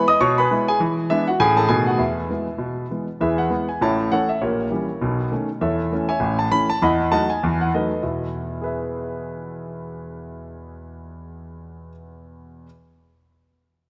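Stride piano jazz in E major, exuberant and playful, swinging at a brisk 199 BPM in 4/4 through a short fragment of a longer piece. A warm, present grand piano plays alone for the full 12.7 seconds, ranging from A1 to D#6 with long sustain and an up-front place in the mix, moving through changes such as E7, A#dim7, B9 and B7/E before settling back on E at 8.0 seconds. A wet, spacious scoring-stage reverb surrounds the playing.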